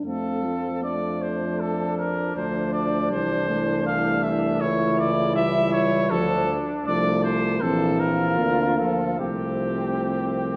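A warm trumpet with light vibrato and a soft attack carries the noble, triumphant melody up front in this brief classical brass quintet excerpt in F major at a rubato 79 BPM, joined by a mellow flugelhorn second line with vibrato, dark, smooth-topped French horn and euphonium accompaniment, and a bright bass trombone with light vibrato holding the bass, moving through F, C, A7/C#, Dm, Bb and Csus4 in a wet concert hall reverb that places the trumpet, flugelhorn and trombone at a roomy distance.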